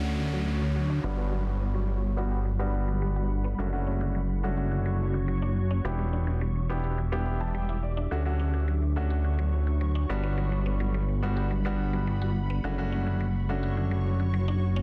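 A chorused synth bass sits up front in this euphoric, summery pop excerpt, its glossy, retro tone built from pulse and sawtooth waves with pulse-width modulation and a filter sweep that runs through the whole 14.8 seconds. At 106 BPM in a straight 4/4 and D major, the harmony moves between Dmaj7, Gmaj7, Dmaj7/F# and Em7. A polished grand piano plays accompaniment with a short sustain under a low-pass filter, stopping at 14.2 seconds after a fill from 7.0 to 8.1 seconds. A cloudy, detuned granular pad holds blurred, full-bodied chords with a slow attack, long release and its own reverb. A woody, round mallet-like pluck plays arpeggios in the background, carrying chorus and digital delay. An electronic downlifter marks the opening 3.6 seconds, and the whole sits in a digital ambience with a dense, heavily limited modern master.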